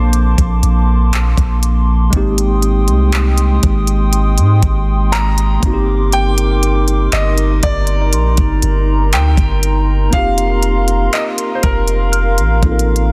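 Contemporary R&B at a slow 60 BPM in 4/4, tender and dreamy, with a clear, intimate concert grand carrying the delayed melody, its action noise audible, over a clean tine electric piano and a hollow, flute-like pad with chorus and sidechain pumping, moving through Bbmaj9, Abmaj7, Cm9/G and F7sus4. A deep, sine-toned 808-style bass sits up front with a trap kit of knocking kick, crisp hats and handclaps, the snare softly clipped. A bell-like celesta with delay returns in the background at 8.1 s, all set in a small room under a dense, heavily limited modern master in this short cut from a longer piece.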